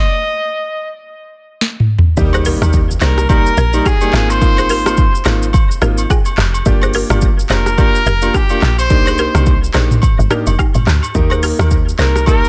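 A dense, heavily limited modern master in studio ambience carries this breezy, joyful afrobeats excerpt with lightly swung sixteenths: a bright, distant trumpet with light vibrato and tape echo carries the melody alone until a drum fill at 1.6 s brings in an up-front, electronic afro-pop kit with deep kick, sharp snare and smooth hats, and from 2.2 s a punchy, woody log drum bass and a clear, intimate grand piano with audible action noise join, followed moments later by a buzzing balafon riff with tape echo, saturated agogo bells and woodblock in the background, and a very quiet electronic impact.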